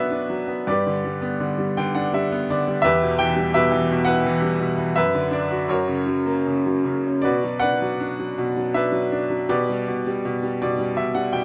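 A bright baby grand piano opens this peaceful, calm passage of lyrical classical solo piano, cut from a longer piece, playing in a rubato triple metre across a range from E2 to G5, its brilliant, natural tone placed up front with long sustain in a moderate studio reverb, adding short fills at 1.4 s and 10.2 s as the harmony moves from Bm through G, Em and F# before settling on Em9/B.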